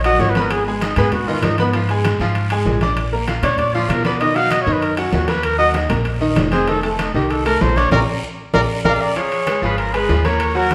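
A mellow solo trumpet with vibrato leads this driving, passionate salsa excerpt at 194 BPM, carrying the melody up front until 8.9 s. Behind it, a bright, brilliant grand piano plays accompaniment with short sustain, while a woody, thumpy pizzicato upright bass anchors the low end. Ringing metal-shell timbales, soft-handed congas sitting in the background and a raspy guiro fill out the percussion. The band hits an accent from 7.9 s, with a drum fill at 8.5 s, and at 8.9 s a tight, punchy trumpet section takes over the melody, colored by tape echo. The chords move through Ebm, Abm and Bb7 before landing on Db7, and the whole band sounds as if it is playing live in one room, set in a large studio reverb.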